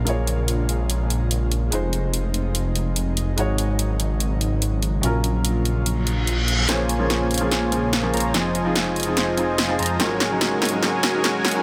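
A smooth, detuned soft supersaw riff arrives at 6.7 s, carrying gritty 12-bit sampler texture, a low-pass filter sweep and dub echo through a build-up in this emotional, lush future bass excerpt in Bb minor at 145 BPM with a half-time feel. Underneath, a thick, saturated detuned saw bass with chorus sits up front alongside a punchy, layered big-room dance drum kit of hi-hat and snare in studio reverb, which plays a drum fill under the build-up. An intimate felt-muted upright piano with dub echo and an airy, breathy pad with chorus hold the Bbm7, Fm7 and Ab7sus4 chords, while a very quiet reverse cymbal and riser enter at 6.0 s, all set in light digital ambience.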